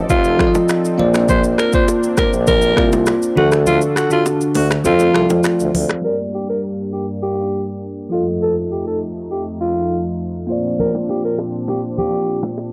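A dry, gritty recording with a low-pass filter frames this mellow, smooth afrobeats excerpt in G minor at 101 BPM, where a bright, bell-like tine electric piano with phaser sits up front over a soft-attack sawtooth pad with chorus, and a breathy, raspy alto saxophone carries the melody with vibrato. A clear, distant tuba holds the bass while an electronic afro-pop kit with deep kick, snaps, rim clicks, shaker and smooth hats drives the groove alongside background congas and bongos, with the kick muted from 3.7 seconds. At 6.0 seconds the tuba and drums drop out and a filter sweep begins on a G minor chord, the hand percussion returning at 10.8 seconds.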